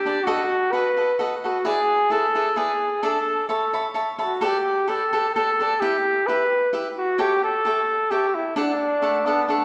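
Mexican folk mariachi in a romantic, proud triple metre, taken from a longer piece, with a mellow, punchy trumpet carrying the melody up front in a vintage, classical style over a crisp, picked acoustic cavaquinho accompaniment. Near the end, at 9.0 seconds, a dark, soft-attacked cor anglais slips in with a distant second line. The whole passage sits in the wet reverb of a church or concert hall as the chords move through B7, E7, Em and A7 before settling on D.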